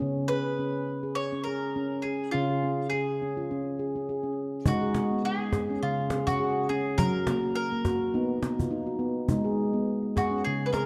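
Set in 4/4 with a gentle swing on the sixteenth notes, this short cut from a longer world piece moves with a hypnotic, meditative sway. A stainless steel handpan opens at the start, spinning ringing arpeggios across its low and middle register with sharp finger strokes that sound bright and sit up front. At 0.3 seconds a bowl-back mandolin joins with a picked melody on double strings, its acoustic tone close and present. At 4.7 seconds a snappy cajon with snares enters, played with soft hands and carrying a small-room sound, as the harmony moves through G#m, F# and B. A dark, warm production wraps the recording in a generous echo chamber reverb.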